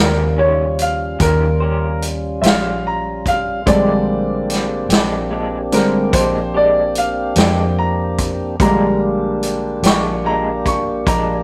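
A slow 12/8 groove rolls along with a straight feel in this gritty, rollicking blues excerpt. The clear grand piano sits up front and takes the solo for the whole passage, while a slightly broken-up electric guitar through a small old amp adds compressed, lo-fi fingered accompaniment colored by tremolo. A fat tonewheel organ holds sustained chords through a slow rotary speaker, and a dark, round, foam-muted electric bass anchors the low end. The vintage drum kit comes in at 0.8 seconds with hi-hat, a punchy kick and a medium-tuned snare, its top end rolled off and its sound pushed up front. The harmony moves from Eb13 to Bb13 at 3.7 seconds, and light reverb and tube saturation give the whole track the rough feel of a rehearsal-room take.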